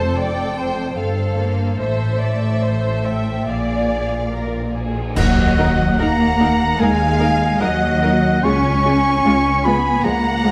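A dark production in a moderate scoring-stage reverb gives this cut from a longer cinematic film score a sorrowful, moving weight. At 74 BPM in 4/4 with a rubato feel, a lush, bowed violin section carries the melody with focused vibrato, while a second, smoother and more distant violin line and a clear viola section fill out the accompaniment. Beneath them, a distant cello section and an up-front, expressive double bass section anchor the bass as the harmony moves through F, Am and Bb7. Bright, close cymbals, including a cymbal swell and clash cymbals, join a concert bass drum from 1.8 s to 6.8 s. At 5.2 s the ensemble strikes an accent as the music settles into Eb minor. A classical-style solo oboe with soft attack and light vibrato enters on a second line there, before the chords move to Db.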